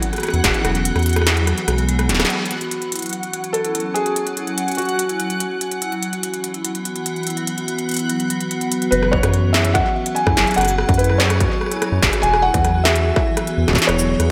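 A bright, 1980s-style digital sheen and a lush hall ambience frame this eerie, intricate IDM excerpt at 145 BPM in straight 4/4. An icy, crystalline glass pad holds sustained chords throughout with sidechain pumping and shimmer reverb, while a reversed, granular swelling texture hangs on a high F#5 until 8.9 seconds. A vibraphone with medium hard mallets plays ringing, metallic arpeggios through delay and a filter sweep at the opening. An industrial kit of clanging snare, crisp hats, cabasa and rim click sits up front with overdrive and gated reverb, joined by a distorted electronic kick that sounds briefly at 0.4 seconds, then drops out and returns at 9.1 seconds, alongside a deep, round analog bass. A soft, felt-muted upright piano carries a mellow, intimate melody in two passages, the second starting at 8.9 seconds over chords moving between F#sus2 and E.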